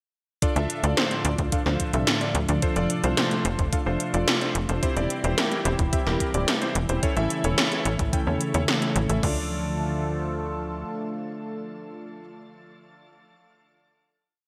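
A tight, punchy sequencer bass drives this short synthwave piece at 109 BPM in D minor. Its nasal sawtooth-and-square filter pluck gallops in sixteenth notes from 0.6 s through a moody, nostalgic progression of Dm, F6, C/E and A. With it, a thumpy, tape-coloured electronic kick and an 80s machine backbeat of gated snare, metallic closed hats and crash sit up front, both drum parts stopping at 9.3 s. A swirling, detuned analog pad holds mellow chords through phaser, chorus, sidechain pumping and shimmer reverb. Alongside it, a vintage electric grand piano with clangy bass and chorused unisons plays pulsing gated stabs in close voicing, carried by delay and shimmer. The piece settles on a final Dm chord, with pad and piano ringing on to 12.2 s inside a lush hall reverb and bright 1980s-style digital production.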